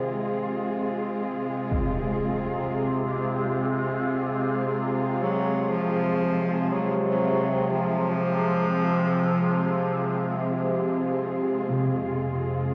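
Drenched in a huge, cavernous reverb and a worn, warbling tape sound, this desolate dark ambient drone fragment unfolds in free time and feels deeply unsettling. A resonant, wave-folded synth drone with moving overtones and chorus sits up front alongside a veiled, muted cello section holding sustained chords, while a bronze singing bowl rings faintly beneath. A clear, distant solo bass clarinet fades in with a delayed melody until 11.2 seconds, and a huge, dark, low-passed impact strikes at 1.7 seconds.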